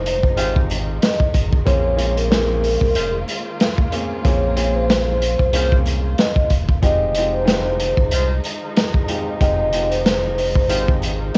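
Boom-bap hip-hop excerpt with a moody, dark, swung feel, where a ringing vibraphone played with soft mallets carries the melody through a cassette-tape haze over short-sustain baby grand piano chords, smooth bowed strings in the background, a deep sine-like sub bass, a gritty, saturated breakbeat kit up front, faint jingly sleigh bells, and distant horn stabs with tape echo entering at 0.4 seconds, all framed by a dry home-cassette sound with vinyl crackle as the chords move from Fm7 to Bbm9 and back.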